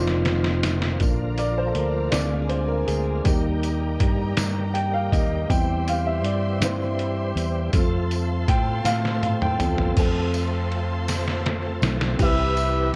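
A gritty, pitched-down sampler-style drum kit with a thumpy kick sits up front in this short slice of slow, jubilant gospel at 54 BPM in 6/8, rolling through fills at the start and again near 8.9 and 11.1 seconds while a round, punchy fingered electric bass anchors the chords from Bb through Eb to F. A boxy concert grand with long sustain and plate reverb takes a solo from 1.0 to 10.0 seconds over a bright, shouting tonewheel organ with key click and slow rotary, a jingly tambourine, and a distant, lush string section bowing with vibrato and portamento. A mellow, octave-doubled horn section appears only briefly at the very start and returns at 12.2 seconds on a closing Cmaj7, all wrapped in the warbling pitch drift of worn cassette tape.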